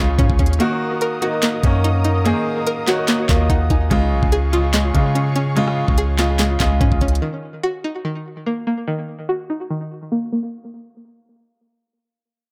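An echo-heavy, lightly reverberant mix opens this menacing, melancholic trap excerpt in Eb minor at 145 BPM with a half-time feel, where a brilliant concert grand piano with analog delay accompanies and veiled, con sordino strings sustain the chords over a deep, sine-toned 808 bass and an up-front electronic kit of knocking kick, sharp snare, crisp hats, handclaps and rim clicks, which breaks between 0.6 and 1.4 seconds. A twangy, full-bodied resonator pluck, chorused and delayed with a sawtooth edge and noise layer, spins arpeggios throughout. At 7.2 seconds the piano, strings, bass and drums stop, leaving the pluck alone under a filter sweep until 10.5 seconds.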